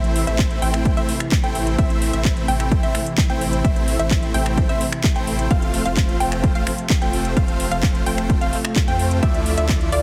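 A straight 4/4 pulse at 129 BPM drives this powerful, euphoric slice of festival progressive house in A minor, cut from a longer piece, with every melodic and bass part breathing to sidechain pumping. An up-front, punchy electronic kick, overdriven and re-recorded in a large room, enters at 0.4 s and holds to 9.8 s, sitting on top of a layered house kit of finger snaps, handclaps and metallic hi-hats that carries the same overdrive and roomy character. Beneath them, a deep, thick saturated sub bass with a triangle tone sustains between F1 and F2. Huge, airy supersaw chords with a bright, detuned edge and subtle chorus and delay carry the riff, while a detuned sawtooth-and-sine unison pluck spins decaying arpeggios high in the D5 to G5 range through its own delay. In the background, a warbling vintage pad with slow attack, long release and 12-bit sampler grit holds sustained chords over the Am to F to Dmadd9 progression, the whole track wrapped in light reverb and a heavily compressed, radio-ready sheen.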